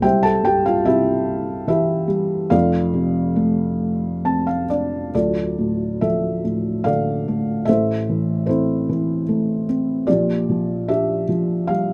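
Classical solo piano in a tender, lyrical vein, this brief excerpt moves in a rubato 3/4 at around 66-76 BPM, its felt-muted upright sounding mellow, boxy and intimate up front with audible action noise, ranging from deep bass to the upper middle through chords of C, F6, Dm, Am and Bb6, with a small fill at 3.8 seconds leading into a second section at 5.1 seconds, all captured by close, detailed microphones in light reverb.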